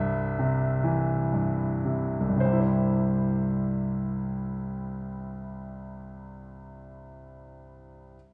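A bright concert grand piano opens this short classical fragment, sitting up front with deep bass and long sustain as it slows through the first 2.4 seconds. The lyrical solo moves in a gentle three-beat lilt with free rubato and turns to a new section at 2.4 seconds. A recital-hall reverb and a dark, warm production give the piece a peaceful calm.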